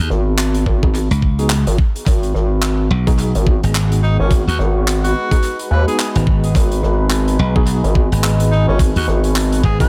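A swung 4/4 groove at 107 BPM, with a 59% swing on the sixteenths, drives this swaggering, playful glitch hop excerpt in G# minor, sitting on a single G#m7 chord throughout its 9.9 seconds. From the start, a bright, punchy slap bass and a gritty, saturated synth bass with overdrive and oscillator sync sit up front together. An airy, polished street-band kit of handclaps, hi-hat and rim click arrives almost immediately through analog delay, and an overdriven, knocking electronic kick joins at 0.7 seconds. In the background, a worn, slightly out-of-tune tine electric piano plays stabs through a combo amp, colored by medium tremolo, 12-bit sampler grit, sidechain pumping and analog delay. A smooth, warbling analog pad enters at 2.1 seconds with chorus and its own sidechain pumping. At 4.0 seconds a clear tenor saxophone takes the solo melody with analog delay, sitting in an echo-heavy mix with light studio reverb.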